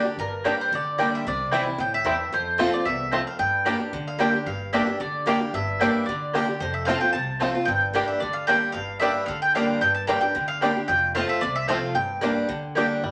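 Bluegrass in a haunting, driving mood, this short passage cut from a longer piece moves at a brisk pace over a minor-leaning progression that circles between Gm, C and F. A picked mandolin carries the melody up front, its doubled strings giving a woody, rounded tone, while a second, brighter mandolin adds stabs. A parlour-sized steel-string acoustic guitar, boxy and crisp with fresh strings and audible finger squeak, provides picked accompaniment close to the listener. An upright bass plucks a thumpy low line, and a twangy, percussive banjo played with fingerpicks spins arpeggios in the background. The whole group sits in a wet studio reverb, and the passage shifts into a new section at 4.5 seconds.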